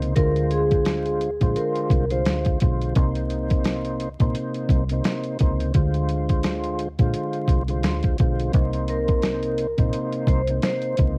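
Reflective and gritty, this short cut from a longer boom-bap hip-hop piece moves at 86 BPM in 4/4 with a swung sixteenth feel, settled in C minor. A sampler-style drum kit sits up front, compressed and pitched down, its thumpy kick, medium-tuned snare and hi-hat carrying a tape-worn grain. Beneath it, a deep dub fingered electric bass stays low and round, dark and punchy with a foam-muted thud. A mellow tonewheel organ fills the middle with clean, dusky chords, colored by chorus vibrato and a slow rotary speaker, filtered at both ends and run through cassette tape. A metallic vibraphone played with medium mallets rings out a brief melody with slow motor vibrato from 0.2 to 2.4 seconds and returns at 8.9 seconds, over chords that alternate between Dm7b5 and Cm7. The dry, close sound of a home cassette recording, dusted with vinyl crackle, gives the whole piece a lo-fi intimacy.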